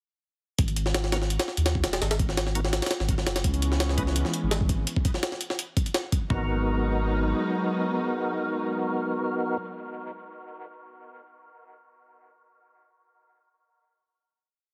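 A dark, raw jungle drum-and-bass piece opens at 0.6 seconds with a gritty, pitched-up, heavily chopped breakbeat of thumpy kick and high-tuned snare over a round, soft dub sub bass of long gliding notes, while sparse echoing stabs from a fat, lightly overdriven tonewheel organ with key click and slow rotary swirl arrive at 1.1 seconds, and a veiled, muted string section adds sustained bowed chords from 3.4 seconds, carrying with the organ into a final chord as the drums and bass drop away, all heard through a heavily compressed, radio-like sound with light reverb.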